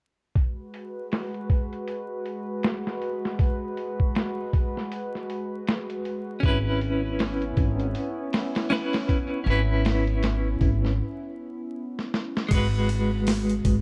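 Vinyl crackle sits over a dry mix in this melancholic, hypnotic trip hop excerpt, moving at 79 BPM in 4/4 with a swung sixteenth-note feel in G# minor. A gritty, pitched-down, sampler-style boom bap kit runs throughout, up front and compressed, its thumpy kick, high-tuned snare, hi-hat and crash all dulled by low-pass filtering. Beneath it, a warbling, nostalgic sawtooth-and-triangle pad holds mellow sustained chords, G#m7 moving to C#m7/G#, with slow attacks, long release, chorus and its own reverb. At 6.4 seconds a woody pizzicato upright bass on steel strings anchors the low end on G#1, while a clean, picked electric guitar joins up front with compression, tremolo and tape echo. After a break, a drum fill at 11.9 seconds leads into a short new section at 12.5 seconds, where the pad stops and the chord returns to G#m7 as the drums, bass and guitar carry on.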